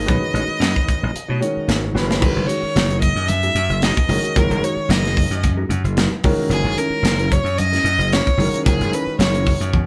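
A bright, funky stretch of electric jazz fusion opens with a biting, focused solo violin carrying the melody with vibrato up front, over a punchy, amped slap bass, a boxy concert grand with deep, long-sustaining chords and a dark, clean, compressed electric guitar dropping fingered stabs in the background, all at 112 BPM with a light sixteenth-note swing. A tight funk kit with a medium-tuned snare and tight kick sits forward, and its fill at 2.0 seconds leads into a new section where thick-skinned, close and dry congas slip in behind at 2.2 seconds. The harmony moves from B9 to a rootless Emaj9#11 over F# and settles on F#9, with the band captured live in one room under a short, moderate studio reverb.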